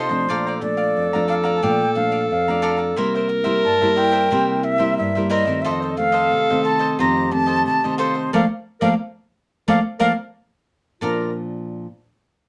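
Samba at 90 BPM in 4/4 with a straight feel, in Bb major, this short cut from a longer piece sounds sunny and festive. A mellow, airy jazz flute carries the melody between Bb4 and Bb5, tongued and expressive with vibrato, set back at a distance in the mix. Beneath it, a crisp, picked cavaquinho and an up-front, fingerpicked nylon-string guitar in classical style supply the accompaniment, the guitar ringing on until 11.9 seconds. A clarinet in classical style enters at 0.3 seconds with a second line in a narrow span from F4 to Bb4. The harmony moves from Bbmaj7 through C7 and F7 before returning to Bbmaj7 at 8.3 seconds, where the band plays an accent that lasts until 11.0 seconds. A moderate studio ambience with a short decay gives the ensemble a natural, intimate setting.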